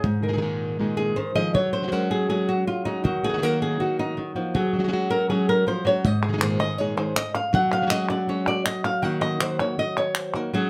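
A fingerpicked flamenco guitar carries a proud, fiery solo melody up front, while a second flamenco guitar adds stabs over a cycle of Ab sus2, Gb sus2 and Eb minor at a brisk 160 BPM in straight 4/4. Both guitars have a warm acoustic tone, and crisp, close and dry palmas hand claps join at 6.2 seconds. A moderate studio reverb frames this short excerpt from a longer piece.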